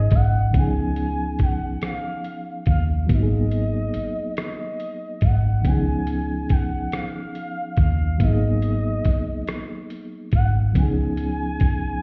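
Yearning and sultry, this slow R&B fragment in six-eight moves at 47 beats per minute with a straight feel, cut from a longer piece and circling between G#m9 and C#9 chords with extended colour. A smooth, gliding lead with a soft attack carries the melody, its sustained tones shaped by vibrato, portamento, chorus, phaser and tape echo while sitting quietly in the mix. Beneath it, a reedy electric piano plays the accompaniment with a fast tremolo, sounding clean through its built-in speakers. A dark, round, foam-muted electric bass sits up front and low, alongside a gritty, compressed sampler-style drum kit whose thumpy kick, hi-hat and rim click were re-recorded in a large room. The whole track is heard muffled as if through a wall, with a stone room ambience and little added reverb, giving it a dusty, distant character.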